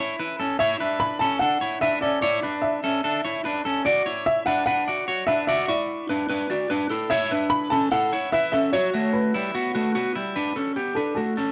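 An electric guitar at the edge of break-up opens the clip at 0.0 seconds, playing arpeggios in a twangy, fingered tone that sits up front. This is restless, bittersweet indie pop in B minor at 148 BPM in a straight 4/4, cut from a longer piece. At 0.6 seconds a dark upright piano enters with the melody, its mellow, woody voice sounding worn and slightly detuned, with audible action noise and a digital delay trailing its notes. The harmony moves through Dsus2, Bm, Asus2 and Bsus2 before shifting to a new section on Gmaj9 at 10.4 seconds. A moderate echo chamber reverb and studio ambience surround the two parts, giving the dark, warm production a sense of depth.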